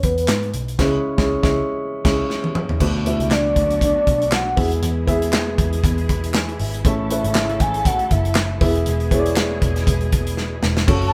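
Piano-driven pop at 119 BPM with a lightly swung 4/4 feel, this anthemic, uplifting fragment pairs a round, octave-layered synth lead carrying the melody with chorus, tremolo and vibrato over a polished grand piano, a dark, foam-muted picked electric bass and a punchy, up-front acoustic kit with handclaps, toms and crash, as the band hits accents that close with a drum fill, and veiled, con sordino strings enter at 2.8 seconds with lush sustained chords across a progression moving through E, C#m7, D6 and A in a moderately reverberant live-room sound.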